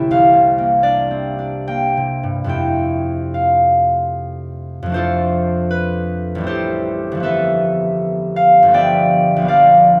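Peaceful and dreamy, this classical solo harp excerpt in 3/4 drifts with a rubato feel as the bright, ringing concert harp, fingerpicked and up front, spans G1 to C6 over chords moving from C9sus4 to Fmaj7, then through F6, Am7 and G13 to Bb6 at 9.5 seconds, all carried by a wet recital hall reverb.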